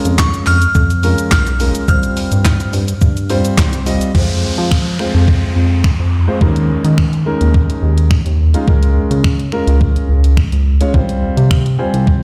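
A chorused synth bass sits up front in this driving, energetic dance-pop excerpt, its retro, glossy tone built from pulse-wave and sawtooth layers with ring modulation and wave-folding, plucked by a filter and pumping against a sidechain. A clean 12-bit drum machine carries the straight 4/4 beat with a thumpy kick, fat snare, hi-hat, handclaps, finger snaps, shaker and crash cymbal, all with a sampler-style, tape-tinged punch. A dark, mellow concert grand piano fills in the harmony beneath, also pumping with the sidechain, over chords that move from Bbm7 to Csus4 and later through Fm and Eb7sus4. A glassy, crystalline FM bell states a brief high melody through chorus and tape echo in the opening seconds, stopping at 3.5 seconds, and an electronic downlifter sweeps through the second section from 4.1 to 8.7 seconds. The piano closes the cut with a short fill at 11.5 seconds, and the mix carries little reverb, as if heard over a big sound system in a bare room.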